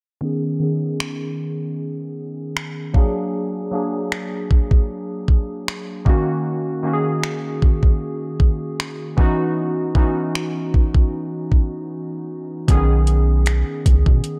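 The recording has a dark, close production with little reverb, and this short section is cut from a longer contemporary R&B piece with a tender, dreamy mood and a light swing. Analog synth keys open the piece, a detuned blend of square and sawtooth tones with a fast attack and decaying notes, thickened by chorus and shaped by a low-pass filter sweep that runs until 12.7 seconds. A trap drum kit joins almost at once, electronic and tape-warm, with a knocking kick, metallic hats and finger snaps sitting up front. The chords drift through rich extended harmonies before a brief break clears the way, and at 12.7 seconds the music returns to its opening chord for a new section. There a round, deep analog bass arrives, a wave-folded mix of square, sine and triangle tones with a fast attack and sustained notes, placed up front for the closing moments.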